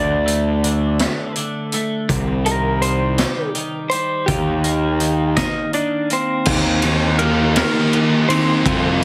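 A slightly broken-up lead guitar carries the melody over the warm arpeggios of a clean twelve-string electric guitar with subtle chorus, while a growly, overdriven fuzz bass sits up front beneath them. A raw garage drum kit joins at 0.3 seconds, its high-tuned snare and punchy kick sounding saturated and gritty in a small room, alongside hi-hat, ride and crash cymbals. This dark, cathartic quiet-loud alternative rock piece moves slowly at 55 BPM in a straight 6/8, with the harmony passing from D5 to Cm to Eb. At 6.5 seconds the twelve-string drops out and a thick, double-tracked fuzz guitar takes over with a heavy, distorted riff, the loudest part of the mix. The whole recording has a heavily compressed, radio-like sound with light reverb, and it is cut from a longer piece.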